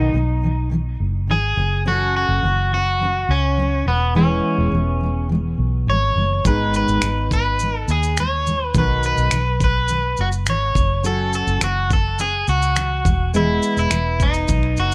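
Easy-going and carefree, this acoustic pop excerpt in E major at 104 BPM pairs a bright, twangy electric guitar melody with vibrato and delay over a full-bodied, double-tracked fingerpicked jumbo acoustic guitar and a dark, round, foam-muted fingered bass sitting up front, while a gritty, compressed sampler-style kit of finger snaps, thumpy kick and shaker enters at 6.5 seconds, all moving through B, F#m, E and G#m in light reverb.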